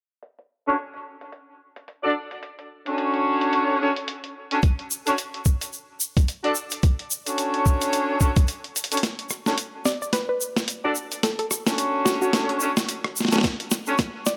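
Swaggering and funky, this glitch hop passage swings over a gritty, pitched-down boom bap kit of filtered hi-hat, rim click and high-tuned snare, while a mellow, roomy jazz-style horn section with vibrato and octave doubling pumps out Dmaj7 stabs through tape echo. A thumpy electronic kick and a grainy, close tube shaker join at 4.6 seconds, and after a drum fill the second section builds as a filter sweeps across the horns. A woody, wave-folded pluck enters at 9.9 seconds, its chorused, short-decaying notes adding an organic, percussive melody.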